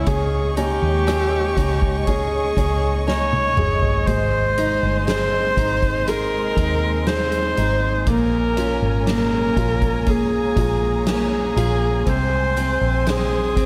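This tender, emotional pop ballad moves at a slow, straight pace, heard as a short section cut from a longer piece. A dark solo viola carries the melody up front, its bowing airy and close with a soft attack and gentle vibrato, sounding intimate and sul tasto in tone. Beneath it, a felt-muted upright piano gives mellow, hushed accompaniment, while a lush symphonic string section holds sustained chords in the background and a full-bodied picked steel-string acoustic guitar adds delayed arpeggios further back. A vintage electric bass, foam-muted and round, anchors the low end, and a soft-mallet drum kit with a boomy kick and medium-tuned snare enters at 0.1 seconds, playing a fill from 3.1 to 4.1 seconds. The harmony drifts from Dbsus2 through Ab and Bbm7 to a tense C7(#5, no3) at 12.1 seconds, all within a light reverb and small room ambience.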